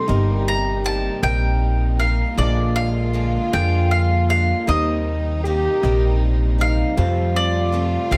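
A round, double-strung mandolin carries the melody from the start of this uplifting folk excerpt in a slow 6/8 at 52 BPM, joined by a vintage-toned French horn with light vibrato on a second line, soft sul tasto chamber strings holding chords, a boxy swing-style acoustic guitar picking in the background, and a very quiet, intimate upright piano with audible action noise, while a woody pizzicato upright bass sits up front from 0.1 seconds, all in light studio reverb as the harmony moves from Eb6/G through Bb7 and Eb6 to Fadd9.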